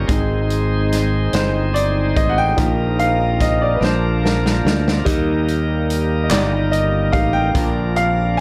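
A clear, slightly boxy baby grand piano leads this hopeful, soulful slow gospel passage, taking a solo across the whole 8.4 seconds while it carries the accompaniment in Eb major. The tempo sits at 48 BPM in a straight 6/8, with the harmony moving from Ab through Bbsus4 and Bb to Eb before returning to Bb. Underneath, a full, shouting tonewheel organ holds sustained chords through light overdrive and a slow rotary speaker, while a very quiet, distant French horn section adds roomy classical-style chords. A bright, growly fingered electric bass sits up front, and a natural country drum kit with a punchy kick and medium-tuned snare keeps time, rolling into a fill from 3.8 to 5.1 seconds. A hollow group handclap sounds briefly in the background at 6.3 seconds, and light small-room reverb surrounds this cut from a longer piece.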